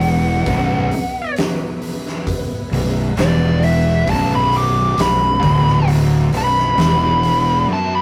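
A slow, straight 4/4 pulse at 66 BPM drives this hypnotic, heavy stoner and doom metal excerpt in B minor, where an up-front, dark fuzz lead guitar solos over a steady Bm. Beneath it sit three picked fuzz rhythm guitars grinding a low riff, one distorted in the background and two very quiet, one of those double-tracked. A growly, punchy fuzz fingered bass sits up front, while a very quiet, warbling vintage string machine holds mellow cello chords. An oversized, low-tuned kit with a fat snare and a gritty, saturated room sound drops out at 7.4 s, and the bass follows at 7.6 s, all within a rough rehearsal-room recording with moderate small-room reverb.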